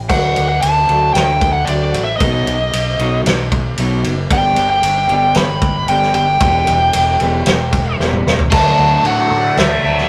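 This rough rehearsal-room recording sits in a moderate booth ambience with a short decay, capturing a brief cut of restless, cathartic quiet-loud alternative rock in a straight 4/4. A twangy, slightly broken-up electric guitar through a small old amp picks arpeggios over a cycle of D, B, G and Em, stopping at 8.3 seconds. Beneath it, a fingered electric bass growls with fuzz and overdrive. Up front, a smooth overdriven lead guitar carries the melody in a high register, coloured by tape echo. The loose indie drum kit sounds gritty and saturated, with a punchy kick, a medium-tuned snare, a rolled-off top, crash and ride cymbals and toms, and a drum fill at 8.0 seconds leads into a new section at 8.5 seconds. There a bright, crunchy, double-tracked riff guitar with phaser arrives as the chords return to D.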